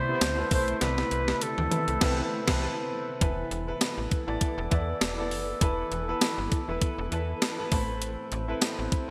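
Lightly swung sixteenths drive this moody, dramatic 1980s-style pop fragment, where a punchy, vintage flugelhorn with vibrato and delay and bold, fat analog synth brass stabs fill only the opening seconds over an intimate, chorused concert grand piano, a cloudy, evolving granular pad in the background, a snappy slap-like FM bass and a 12-bit drum machine with a thumpy kick and gated reverb whose fill runs from 0.8 to 3.2 s, in a bright digital production with lush hall reverb.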